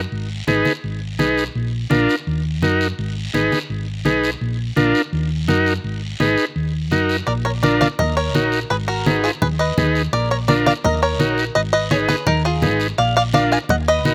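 Driving and fiery, this excerpt of a cumbia moves at 168 BPM in a straight 4/4, cycling through chords such as Abm, Ebm and Bb. A round, dark hollow-body electric bass sits up front from the start, joined at once by a raspy guiro, and from 0.5 seconds by damped, low-tuned congas and a reedy vintage combo organ with heavy vibrato and slapback echo. At 7.3 seconds a twangy, fingerpicked bluegrass banjo takes the melody up front, its percussive attack also carrying slapback echo in a dry, open-air sound.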